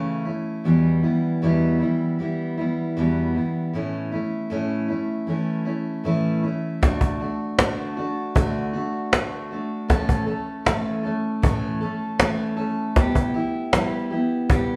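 Set in a small stone room with a wet reverb, this live-sounding fragment of acoustic folk moves at an unhurried 78 BPM in D major, with a hopeful, gentle mood. A picked steel-string acoustic guitar with a full-bodied, jumbo tone sits up front, playing the accompaniment alone over chords that move from A/C# to Em and A. At 6.8 seconds a close, woody cajon joins, played with soft hands and carrying faint snares, as the harmony shifts to D, then A and Em/G.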